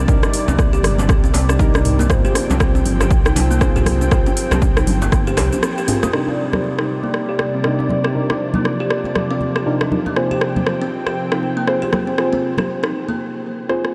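A dreamy, spiritual afro house groove opens with a detuned analog pad holding lush, chorused Cm9 and Fm chords, while a woody, hollow-boxed kalimba plays bright thumbnail-plucked arpeggios roughened by vintage sampler grit and trailed by diffuse ambient delay. A deep, dark chord stab with cassette-tape softness sits in the background, and a smooth, mellow sawtooth bass moves underneath, all pumping gently against the beat. The swung rhythm comes from a punchy, tape-toned electronic kick and an overdriven afro-pop kit with metallic hats, rim click, shaker and toms, with bright congas and a soft-handed, very quiet djembe filling in the texture. The kick falls away at 5.2 seconds and the bass at 5.5, just before a band accent at 5.6, and the djembe soon follows, leaving the chords, kalimba, kit and congas to drift on in a huge, reverb-soaked space. A short break arrives at 13.2 seconds, and a drum fill from the kit marks the end of the excerpt.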